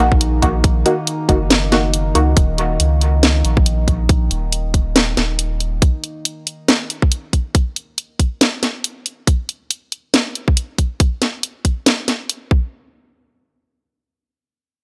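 Deep dubstep with a brooding, dark, half-time swing, cut from a longer piece and recorded dry with a gritty hardware edge. A muted, detuned sawtooth chord stab with a filter pluck and dub echo opens over a round, soft sub bass and a resonant drone of moving overtones, all holding a single minor chord. The stab drops out at 2.2 seconds and the bass and drone at 5.8 seconds, leaving the tight, tape-warm kick and garage kit with its cracking snare and hi-hat up front until around 12.6 seconds.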